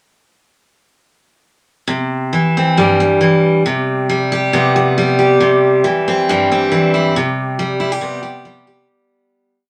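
Highlife in C major at 137 BPM with a light sixteenth-note swing, sunny and danceable, carried by a solo picked steel-string acoustic guitar that plays from 1.9 seconds, alternating C and G/C chords. The dreadnought guitar sits up front with a bright, fresh-stringed tone and audible finger squeak, its fingerstyle alternating-thumb picking ranging from G2 to G4. A wet studio ambience surrounds it, and the piece fades out from 7.2 to 8.9 seconds.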